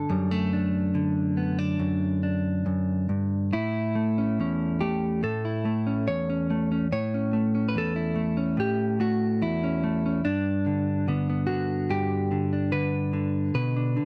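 A dry, close 1970s-style studio sound with light reverb frames this hopeful folk excerpt at 72 BPM in 4/4, where a solo semi-hollow electric guitar, clean, picked, compressed and up front with a warm hollow-body tone, plays rubato in A mixolydian across a range from E2 to C#5, moving from D/F# at 0.1 seconds to A at 3.5 seconds and G at 10.3 seconds.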